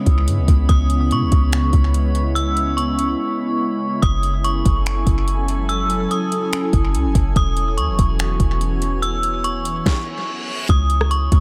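Ethereal and hazy, this half-time atmospheric cloud-rap fragment floats a ringing, inharmonic FM bell melody through tape echo over a detuned, phaser-tinged airy pad, a drifting glassy harmonics texture in the background, a round, dark 808-style bass and an up-front smooth R&B kit of finger snaps, metallic hats, rim clicks, soft kick and deep snare that drops out from 3.2 to 4.0 seconds, with a downlifter near the start and a reverse cymbal at 10.0 seconds adding electronic sweeps to the echo-heavy mix.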